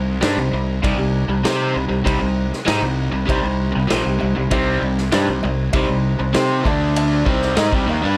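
Two bright, picked, overdriven electric guitars, one carrying a phaser, drive a swaggering classic rock riff over a round, fuzzy fingered bass and a vintage drum kit with a punchy kick and dark cymbals in a small, pumping room, while a warm baby grand piano sits in the background until its fill at 6.4 seconds and a very quiet metallic cowbell joins at 3.3 seconds, all in this short excerpt.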